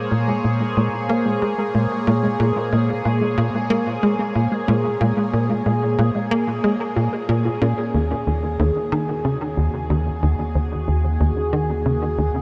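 A tight, punchy sequencer bass drives this hypnotic, expansive piece of ambient space music, its sawtooth and square-wave riff edged with ring modulation and a fast-attack filter pluck that decays quickly, sitting up front in the mix. Alongside it, a phased analog pad holds sustained Bbm7 chords that swirl and evolve through phaser and chorus, its detuned, vintage tone just as prominent as the bass. A warbly, dusty pluck traces arpeggios in the background, its lo-fi, detuned character carrying a noise layer and filter sweep through chorus and analog delay. At 7.9 seconds the harmony moves to Ebm7, and from 9.2 seconds a mellow, nasal analog drone enters low in the background, its pulse-width modulation and moving notch giving it a slow, shifting colour. At a steady 92 BPM in straight 4/4, the pad, pluck and bass are all bathed in shimmer reverb within a huge, wet space whose long tail stretches to 7.1 seconds, in this short cut from a longer piece.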